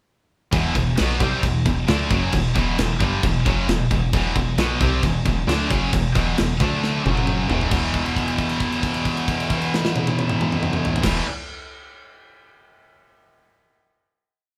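A scooped, high-gain electric guitar sits up front in this short, dark and heavy metal piece in E minor at 134 BPM, picking a bright power-chord riff in a straight 4/4 from 0.5 seconds. A second distorted, high-gain guitar plays the same kind of power-chord riff further back in the mix. A plucky analog bass with a punchy, sawtooth-and-square synth tone and a fast, decaying filter pluck drives steady eighth notes that double the guitar riff. An acoustic metal drum kit, up front with a tight kick, a medium-tuned snare, toms and crash cymbal, pushes a driving groove. The riff moves from E minor through D5 and F#5 to E5, with a drum fill starting at 6.8 seconds leading into a final chord held from 7.7 seconds. The band sounds as if playing live together in one studio room, with light reverb.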